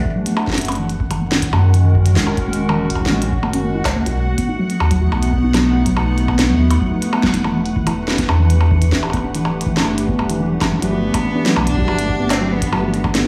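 A hollow, flute-like pad holds sustained chords throughout this wistful, intricate IDM excerpt, its airy tone carrying chorus and a gritty vintage-sampler edge as the harmony moves from Gmaj7 through F#7, B7 and Em7 before returning to Gmaj7. Beneath it, a rubbery acid bass plays arpeggios in the background, its resonant sawtooth tone shaped by a filter sweep and colored with analog chorus and tape echo, while a round sine sub bass anchors the low end. A bubbling, detuned texture of random filter steps glimmers softly up high with chorus and its own reverb. The drums pair a deep analog kick with a glitchy, overdriven kit of clicky hats, a tiny snare and percussion blips treated with tape echo. At 10.8 s a single close, bowed cello enters with a smooth, vibrato-rich melody through analog delay, and the whole mix sits dreamy and soaked in reverb, with a moderate plate around it.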